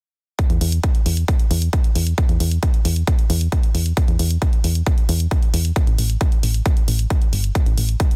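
Uplifting trance at 134 BPM in E minor, this bittersweet yet euphoric fragment of a longer piece sets a layered, tape-warm electronic kick drum up front from 0.4 seconds, its punch carrying the air of a large room, under analog-toned electronic hi-hats that pump with sidechain. A round, dark FM bass with a fast attack and decaying notes sits forward between G1 and E2, thickened by tube saturation and breathing with the same sidechain pumping. The sound is dense and heavily limited, with a digital ambience and a modern master.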